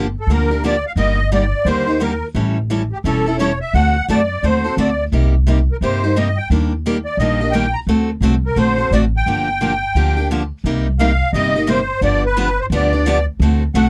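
A reedy, shimmering musette accordion carries the melody from 0.2 s in this bittersweet, swinging jazz manouche excerpt at 174 BPM, moving from G minor into C minor at 10.6 s. Beneath it, a bright picked steel-string acoustic guitar provides accompaniment and a woody, thumpy upright bass with gut strings anchors the low end, all three sitting up front. The sound is dry and close, like a 1970s studio session, with lossy compression artefacts.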